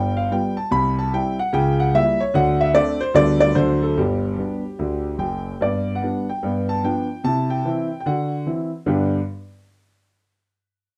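A solo concert grand piano opens this playful, exuberant stride jazz passage in G major, swinging at 147 BPM and moving through changes such as G7, C, C#dim7 and D7 before settling on G. The piano sits up front with a deep, long-sustaining bass and a boxy body, ranging from F#1 to B5 until it stops at 9.2 seconds. A moderate club reverb and a dark, warm production frame this short passage cut from a longer piece.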